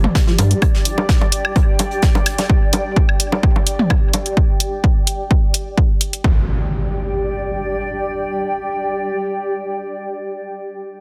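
A dense, heavily limited mix with light reverb frames this sparse, clinical minimal techno excerpt, where a punchy, tape-warm analog kick and electronic hi-hat sit up front until the kick stops at 6.3 seconds. A thick, saturated sine sub bass pumps briefly until 0.5 seconds, alongside a very quiet, squelchy, resonant blip pluck riff with phaser, a soft brushed acoustic kit from a small room, and layered electronic toms, bongos and woodblock trailing dub echo. A cloudy, evolving granular pad with its own reverb and sidechain pumping drifts mellowly throughout, while electronic impacts mark the opening and return at 6.2 seconds.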